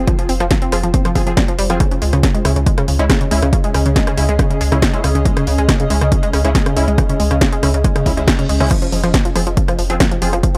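An overdriven, punchy electronic kick sits up front in this relentless, industrial slice of driving peak-time techno, cut from a longer piece and running at 139 BPM in a straight 4/4. An analog drum machine adds an overdriven snare, hi-hat, rim click and crash cymbal, while a thick, deep triangle-wave sub bass with a low-pass filter pumps against the sidechain underneath. The main riff comes from a round, warbling analog pluck, a detuned sawtooth and square-wave sound treated with chorus, overdrive and tape echo. Further back, an aggressive rave stab built from unison sawtooth and triangle voices with ring modulation brings bright, decaying hits through chorus, reverb and echo, and a cloudy granular pad blurs into an evolving haze with a slow attack and long release. The harmony moves from F minor to D-flat minor at 1.8 seconds and returns to F minor at 8.7 seconds, just after a faint reverse cymbal sounds in the background from 8.0 seconds. 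The recording is dry and gritty, with a digital ambience and a loud overall level.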